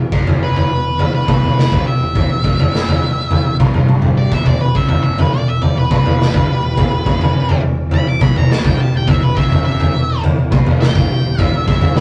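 A straight 4/4 pulse drives this dark, cathartic stretch of quiet-loud alternative rock, cut from a longer piece, with an up-front, saturated garage drum kit of punchy kick, snare and toms carrying the beat. Beneath it, two crunchy overdriven guitars play a low riff set back in the mix, a growly picked bass sits very quiet, and a lo-fi, slightly broken-up guitar through a small old amp picks faint arpeggios over Em and power-chord changes. From 0.4 seconds, a dark octave-fuzz lead guitar soars high above as a solo melody, all captured in a rough rehearsal-room recording with a moderate booth ambience.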